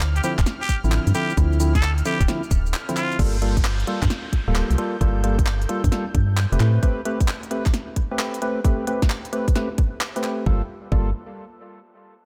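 A moody, late-night two-step garage excerpt at 132 BPM with a swung sixteenth feel opens on a drop: a dark, hollow, organ-like FM bass sits up front, a smooth sawtooth pad with chorus, tremolo and sidechain pumping hangs in the background, and a garage kit of cracking snare, crisp hats, handclaps, shaker and crash plays, soon joined by a tight electronic kick and percussive organ stabs with chorus and dub echo. A nasal, raspy muted trumpet plays a short jazz-style solo with scooped notes and dub echo until 3.2 s, when filter sweeps run on the stabs and pad, a downlifter sits in the background, and the chords move from Dm9 through Gm9 to Am9. The pad and kit stop near 10.5 s, leaving the stabs, the kick and a brief return of the bass over Gm9, all with little reverb.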